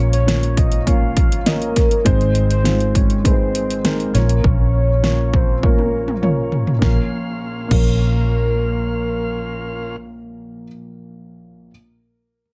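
A soft, round synth lead carries a bittersweet, earnest melody over a dark, woody upright piano with audible action noise, a gritty overdriven tonewheel organ holding sustained chords, and a foam-muted electric bass, while a punchy, up-front electronic pop drum kit with a fat snare and metallic hats drives this straight, piano-driven pop excerpt, plays a drum fill from 5.6 to 6.8 seconds, and drops out at 7.9 seconds.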